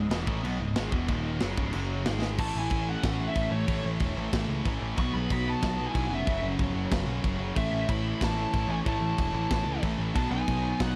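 Aggressive and relentless, this 11-second cut of heavy metal at 185 BPM opens with three picked rhythm guitars (one scooped and high-gain, one sludgy and overdriven, one tight and double-tracked) churning a riff in the background over an up-front overdriven fuzz bass, a tight metal kit with china and crash cymbals, and a very quiet chamber string section holding rich, earthy bowed chords with light vibrato. After a drum fill at 2.2 seconds the kit drops into half time at 2.4 seconds, as a high-gain lead guitar enters with a high melody and a darker second lead line sits beneath it in the background, over chords moving through A, B and F#. The production is dark and warm, with a small-room ambience and a rolled-off top on the acoustic drums.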